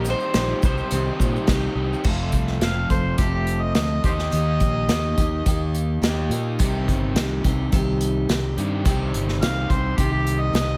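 Folk rock with a heartland rock lean, this dusty, wistful clip moves at 106 BPM in a straight 4/4, set in C dorian. A round, picked mandolin and a very quiet, flute-like tonewheel organ through a rotary speaker open the piece over a grainy tube shaker in the background, and all three drop away by about 2 seconds. Underneath, a bright, full-bodied jumbo acoustic guitar and a crunchy, double-tracked electric guitar riff carry on throughout, anchored by a dark, punchy fingered bass. An up-front unplugged drum kit played with bundle sticks sets its medium-tuned snare, kick, hi-hat and crash in a small studio room. From 2.6 seconds an amplified, gritty harmonica takes the solo, with light vibrato, scooped notes and tongue slaps, as the chords move from Cm to F, Eb and back to Cm in this cut from a longer piece.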